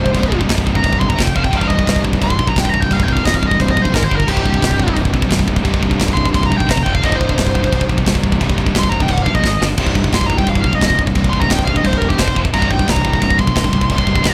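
A distorted, high-gain lead guitar solo with digital delay opens this aggressive, relentless heavy metal excerpt, riding over two bright, double-tracked distorted rhythm guitars playing picked riffs in the background, a growly, fuzz-laden fingered bass, and a tight, up-front studio drum kit with china and crash cymbals that enters at 0.1 seconds and plays a short fill at 9.4 seconds, all in a dry mix.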